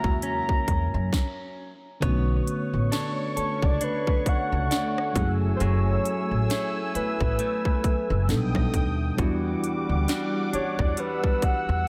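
Swung 16ths at 67 BPM in 4/4 drive this smooth, tender contemporary R&B excerpt, where an up-front, overdriven trap kit with a hard-clipped kick, sharp snare, crisp hats and rim clicks sits over woody pizzicato upright bass, a worn, slightly out-of-tune tine electric piano, bright, compressed clean guitar arpeggios with tape echo, a warm, smooth sawtooth analog pad with chorus, and a round, detuned octave-layered synth lead with chorus, vibrato and tape echo carrying the melody, all soaked in a dreamy plate reverb with a brief stop from 1.1 to 2.0 seconds before the chords move from Bm9 through F#m9 and B7alt to Em9.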